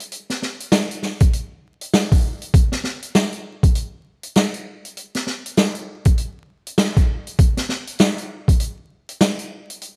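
A swinging acoustic drum kit opens this playful, gritty glitch hop excerpt at 99 BPM in 4/4, its hi-hat and medium-tuned snare sitting up front with a natural studio-room tone and a 61% swing on the sixteenths. At 1.2 seconds a pitched-down, sampler-style electronic kick joins: thumpy, compressed and overdriven, re-recorded in a large room, it drops out at 8.6 seconds while the kit carries on. Light reverb, vinyl crackle and a bright 1980s-style digital production shape the overall sound.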